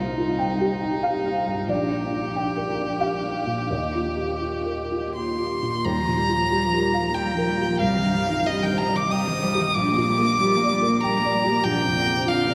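Neoclassical piano and strings in a tender, intimate mood, this excerpt from a longer piece moves in a rubato 3/4 at around 80-95 BPM in Eb major, drifting through Cm, Gm/Bb and add9 chords. A felt-muted upright piano sits up front with a dark, boxy, thickly padded tone and ensemble chorus, while a single bowed violin carries the melody with smooth, even vibrato and a diffuse ambient delay. At 5.8 s a solo cello joins in the background with a soft attack and expressive portamento, and the whole dreamy mix is soaked in a huge, wet reverb.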